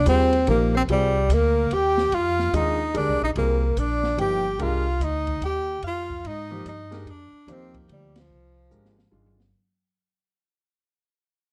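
Modal jazz in a swinging 3/4, searching and spiritual, fading out as it is cut from a longer piece: a breathy, close-miked tenor saxophone carries the melody up front with vibrato, a very quiet subtone alto saxophone traces a second line above it, a woody pizzicato upright bass sits forward, a natural-sounding grand piano accompanies over a single suspended chord, and a smooth, rolled-off drum kit with a boomy kick stays in the background, with a band accent at 8.1 seconds and a drum fill from 8.7 seconds, all set in light reverb and a dark, warm production.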